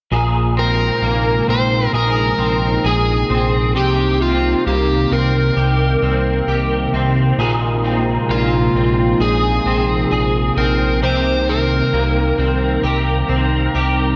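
A straight, steady 4/4 pulse carries this hazy, ethereal dream pop fragment, cut from a longer piece, as the harmony alternates between Bb9sus4 and Cm7. A fat, detuned analog bass sits up front beneath twangy, slightly broken-up electric guitar arpeggios treated with ensemble chorus and tape echo, while a warbling, nostalgic lo-fi pad with a slow attack holds sustained chords from 0.7 seconds. Above them a dark, overdriven slide guitar carries the melody through tape echo, and a moderate plate reverb draws the mix into a dreamy haze.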